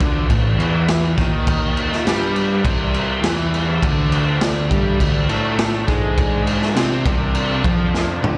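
Gritty and swaggering, this blues rock and southern rock power-trio passage struts at 102 BPM in a straight 4/4, cut from a longer piece. A crunchy, double-tracked electric guitar plays the riff with slapback echo, sitting over a fuzzed, picked electric bass that is both direct and amped. The raw garage drum kit sits up front with a punchy kick, medium-tuned snare, toms and dark crash cymbal, its saturated sound filling a small, pumping room with a rolled-off top. At 3.5 seconds a thick, overdriven tonewheel organ slips in very quietly with sustained chords through a slow rotary speaker and chorus vibrato, as the harmony moves from A5 to D5. The whole thing sounds like a live gig heard through the venue's PA, with recital hall reverb, and a drum fill arrives at 7.9 seconds.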